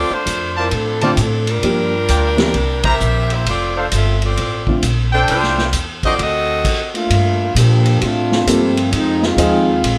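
Swung eighths in 4/4 drive this brassy, energetic big band swing cut, where a bright, vibrato-laden saxophone section carries the melody over warm, smooth-topped trumpet stabs, a woody, thumpy pizzicato upright bass, a distant vintage drum kit with dark cymbals that enters at 0.3 seconds, and an intimate grand piano with audible action noise, before a band accent at 2.8 seconds and a close-miked trombone section taking the solo from 7.1 seconds, the whole set in a moderate large studio reverb.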